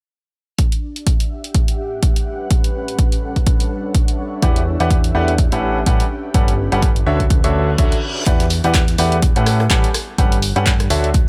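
A clear, up-front grand piano riff enters at 4.4 seconds with a thick, detuned sawtooth bass, both pumping with sidechain and the piano trailing tape echo, driving this uplifting, euphoric piano house excerpt at 125 BPM with a 16th-note swing, built on a punchy, tape-warm electronic kick and analog drum machine handclaps, hi-hat and rim click, an ethereal, airy chorused pad moving through Em9, A13, Gmaj9#11 and Dmaj9, and a reverse cymbal that leads into a very quiet, dry 70s kit's hi-hat and fat snare at 8.3 seconds, set in a small room ambience.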